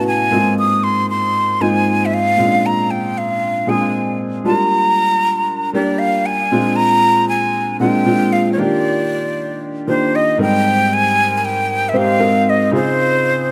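Pop instrumental at 116 BPM in 4/4 with a light sixteenth-note swing, carrying an urban, nocturnal mood across this 13.5-second section cut from a longer piece. A breathy, bright concert flute carries the melody across a range of C5 to Eb6, its tongued notes shaped by vibrato and a slightly unsteady quality, sitting up front with lifted highs. Beneath it, a warm concert grand piano plays accompaniment from Ab2 to C5, its deep bass and boxy tone stretched by long sustain and a lush chorus. The harmony moves through rich chords such as Gm7, Ebmaj7 and Abmaj9 before ending on Dbmaj9 at 12.7 seconds, with a new section beginning at 6.5 seconds. Light reverb surrounds both instruments, and the tuning sits slightly below standard pitch.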